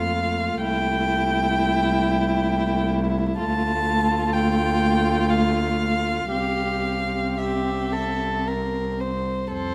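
Classical string quartet music in a slow romantic movement, this short passage cut from a longer piece has a serene, lyrical mood, moving in a flexible rubato triple metre. The first violin carries the melody in a rich, expressive voice with vibrato and portamento, sounding distant yet up front, while the second violin sings a warm second line with a soft attack, its own vibrato and sliding portamento. Beneath them the viola supplies a smooth, even accompaniment, and the cello anchors the bass with a focused, close, up-front tone, all four players bowing throughout the full 9.7 seconds. The harmony moves from F through C6 and D minor before settling on C at 6.3 seconds. A moderate concert hall reverb lends the ensemble a spacious resonance.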